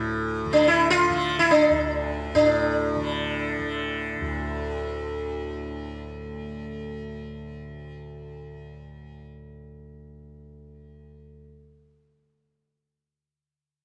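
Meditative and introspective, this Hindustani classical fragment in free time sets a bright, up-front sitar, plectrum-plucked with buzzing sympathetic strings, over a softly plucked, shimmering tanpura drone that sounds from the start and carries on after the sitar falls silent at 6.1 seconds, all captured by close, detailed microphones in a moderate concert-hall reverb.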